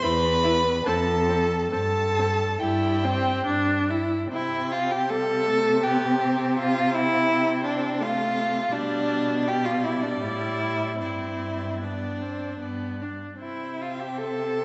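A wet scoring-stage reverb with a 1.6-second decay and a softened top end surrounds this tender, serene excerpt from a slow romantic movement for string quartet in C major, moving in a rubato 3/4 at roughly 67-86 BPM. A clear, focused first violin sings the melody with vibrato above a rich, expressive second violin that sits louder in the mix and slides with portamento, while a smooth, even viola fills the accompaniment and an up-front cello with a soft attack and its own portamento anchors the bass. All four bowed players sound together from the start, the harmony passing from F and C/G through a Cadd11 and a Gsus4 before settling on C at 13.4 seconds.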